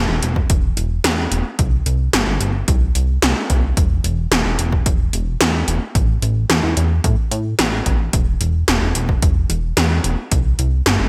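A glossy, chorused synth bass anchors this nocturnal, driving synthwave excerpt at 110 BPM in a straight 4/4, its saturated pulse and sawtooth tones carrying a fast-attack filter pluck and a mellow sustain, with pulse-width modulation, from the very start. Electronic pad drums arrive at 0.2 seconds with a gated snare and metallic hi-hats washed in gated reverb, and a punchy, tape-warm electronic kick joins at 0.4 seconds, all sitting up front. Light reverb and digital ambience frame the bright 1980s-style production.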